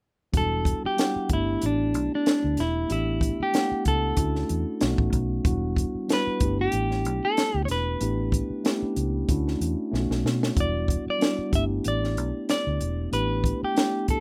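A 94 BPM 4/4 groove with a gentle 16th-note swing drives this bittersweet, cinematic slice of lush 1970s-style soul in E dorian, where a dry cocktail drum kit with a high-tuned snare and punchy kick sits up front beside a dark, round, foam-muted fingered bass, a mellow tine electric piano through built-in speakers comps on Em9, G69, A9sus4, Dmaj9 and B7 chords, a clean, fingered electric guitar carries the melody, and a drum fill lands at 9.9 seconds, all in a rough home demo mix with little reverb.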